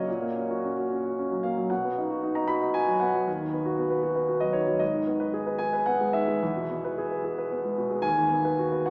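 Rubato pulls the uneven beats of this 3/4 passage around a tempo of about 113 BPM, giving it the freely breathing feel of a romantic character piece for solo piano. The mood is passionate and warm, and this short cut from a longer work lasts just under 9 seconds, with the concert grand playing alone throughout. The instrument sits up front with a clear, natural tone, a deep bass and a long sustain, ranging from D#2 up to B5. The harmony moves from F#/A# through B, B/D#, G#m and E before settling back on B/D# at 8.0 seconds. A wet cathedral reverb with a 4.6-second decay surrounds the piano with the air of a church or concert hall, though the overall sound has a small-speaker quality, and the tuning rests at A4 = 442 Hz.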